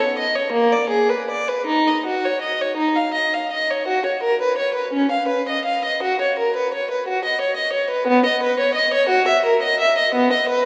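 A rubato 6/8 pulse, felt in slow dotted quarters at 50-60 BPM, carries this solemn, grave baroque-style suite movement for unaccompanied violin, cut from a longer piece. The single bowed violin plays alone from 0.0 to 10.7 s, ranging from Bb3 to E#5, with a rich tone, soft attack, vibrato and expressive portamento. The key settles into F# major from 3.9 s, and the tuning sits at A4 = 442 Hz. The violin is close and up front, while a wet church reverb with an RT60 of 3.7 s is heard from further back in the room, giving the slow lines a spacious, hallowed setting.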